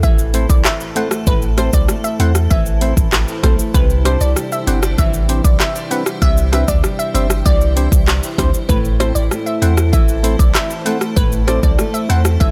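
Sultry and hypnotic, this dancehall excerpt in A minor at 97 BPM moves from Am to Cadd9 and back, with a glassy, crystalline wavetable pluck melody carrying chorus and digital delay over fingerpicked flamenco guitar arpeggios, a deep, punchy sub bass, an up-front electronic drum kit of handclaps, metallic hats, deep kick, rim click and shaker, hollow percussive organ stabs, a blurred granular cloud pad with sidechain pumping in the background, and a very quiet electronic impact at the start, all in a digital ambience.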